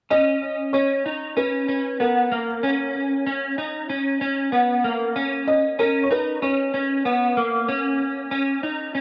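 A dry, gritty recording with light reverb and a small-room feel frames this blissful, dreamy dream pop passage in straight 4/4, where a clean, picked electric guitar sits up front playing arpeggios through ensemble chorus and analog delay until 9.0 seconds, while a soft, felt-muted upright piano carries a mellow, intimate melody through its own analog delay until it stops at 7.3 seconds.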